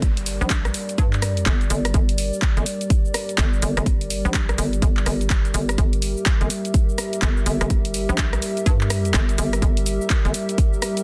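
A punchy, layered electronic kick drives a 125 BPM groove in 4/4, with a 62% swing on the sixteenths giving this bass house excerpt its gritty, swaggering strut. Up front beside the kick sits a hollow, knocking FM bass with a fast attack and quick decay, bouncy and overdriven, pumping against the kick as it works between G1 and G2 before dropping out at 10.3 s. A house drum kit of handclaps, hi-hat, rim click and shaker fills out the rhythm just behind. Underneath, a deep, moody analog pad holds sustained chords on G minor, its detuned square, sawtooth and triangle waves wave-folded over a sub octave, softened by chorus and breathing with sidechain pumping. A very quiet electronic downlifter falls away in the opening 1.9 s, and the whole piece sits in a digital ambience with a dense, heavily limited modern master in G dorian.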